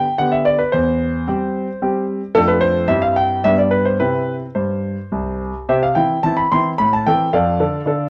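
A worn, warbling old-tape sound with a drifting pitch colors this short cut from a longer piece, set in light reverb. It is a playful, cheerful classical-period piano sonatina in C major, moving at 110 BPM in 3/4 with a rubato feel and tuned to A4 = 439 Hz. A solo concert grand piano plays throughout, up front and natural, with a deep bass and a range from C2 to C6. The harmony opens on G and settles through C/E, Dm7/F and C/G back to G and then C. A new section begins at 5.7 s, turning toward Am and Dm/F before the recording ends at 8.1 s.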